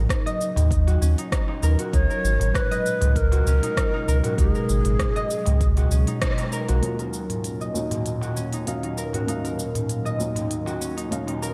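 A breathy, bright low ney carries the melody from 1.9 to 6.2 s, its unsteady vibrato echoed by delay, over an airy, detuned pad with chorus, phaser and 12-bit grit, and mellow fingerpicked harp arpeggios through a low-pass filter. This mystical, meditative organic downtempo piece in Eb minor at 98 BPM moves from Ebm7 to Db7sus4, anchored in its first half by a round, up-front sine sub bass and an overdriven, layered kick, with crisp hats, cabasa and rim clicks from a tape-toned electronic kit and a distant metal-shell darbuka in the background. After a band accent, a thick-felt upright piano enters at 6.8 s with sidechain pumping while a filter sweep runs on the harp, all within a dark, warm production.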